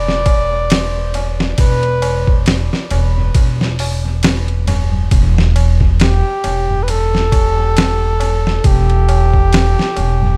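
A bucket-muted trumpet carries the melody in a veiled, breathy jazz voice with light vibrato and tape echo, floating over a melancholic, dark trip hop groove at 68 BPM in E minor with a swung sixteenth-note feel. Up front, a woody pizzicato upright bass holds a low E while a gritty, pitched-down sampler-style boom bap kit with a thumpy kick, medium-tuned snare, hi-hat and ride runs through analog delay. A low-tuned, ringing tabla sits close and dry in the background, and the whole mix is steeped in studio reverb across this short cut from a longer piece.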